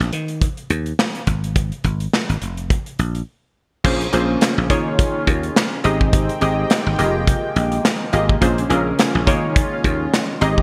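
A tight, up-front drum kit with handclaps, crash and gated reverb opens this slick, danceable early-eighties boogie funk excerpt at 105 BPM alongside a growly, foam-muted thumbed slap bass. After a brief break, a punchy detuned polysynth comp with filter pluck and chorus enters at 3.8 seconds, together with a shimmering pulse-width pad with phaser sitting in the background. The chords move through Bbm9, Eb9sus4, Abmaj7 and Fm11 in Bb dorian, all set in a bright digital production with a lush hall reverb.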